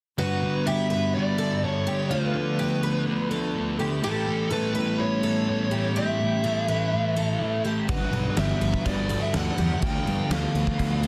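Blissful and wistful, this shoegaze and dream pop rock passage moves at 124 BPM in a straight 4/4, with a biting, overdriven lead guitar singing the melody through tape echo over a shimmering, octave-doubled twelve-string acoustic that picks bright, boxy arpeggios through analog chorus and tape echo. Beneath them, a thick, dark fuzz guitar sits up front with a distorted riff bathed in lush chorus, while a mellow, clean, fingered electric guitar plays its own riff in the background through reverse reverb, all over chords of Gmaj7, Dm6 and A9. At 7.9 s a growly, punchy fuzz bass and a huge arena drum kit with a fat snare, punchy kick and crashing cymbals join in, filling out a dense, heavily limited modern master cut from a longer piece.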